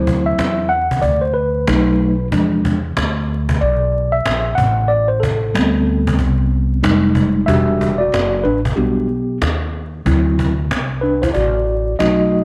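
A mellow tine electric piano and a pizzicato upright bass open this cool, smoky jazz-hop excerpt in E minor at 93 BPM, with a cajon joining at 0.1 seconds. The electric piano sits up front with a clean, warm tone heard through its built-in speakers. It carries the lead throughout, taking a solo over changes that move from D9 through B7, E7b9, Am9 and Fm9. At 7.5 seconds the piece shifts into a new section, where the piano keeps soloing over Em9 and D9. The up-front bass has a woody, acoustic sound with steel strings, while the cajon sounds distant and roomy, its faint snares giving a soft rasp under the 4/4 groove and its swung sixteenths. Light reverb, small room ambience and a layer of vinyl crackle give the recording a hazy, lived-in feel.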